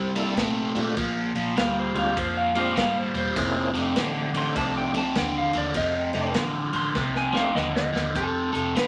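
Rollicking and soulful, this electric blues shuffle at 100 BPM in F mixolydian opens on a compressed, slightly broken-up slide guitar solo over a dark, up-front overdriven guitar riff colored by phaser, a round foam-muted fingered bass, a full tonewheel organ with slow rotary speaker and chorus vibrato, and a natural country drum kit with punchy kick and medium-tuned snare that plays a fill from 7.0 s, before a lo-fi small-amp electric guitar melody enters at 8.2 s, all set in a moderate club reverb.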